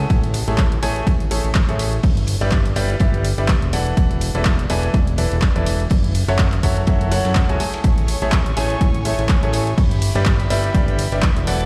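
Euphoric, uplifting piano house cut from a longer piece, swung at 16ths, where a bright grand piano riff with audible action noise, delay and sidechain pumping rides over a fat, nasal, saturated analog bass, an up-front overdriven electronic kick, a punchy analog drum machine's handclaps and hi-hat, and a very quiet, dark acoustic kit of hi-hat, ride and snare, while a rich chamber violin section with light vibrato enters in the background at 7.8 seconds on sustained chords, all of it heard through a big sound system in a bare stone room.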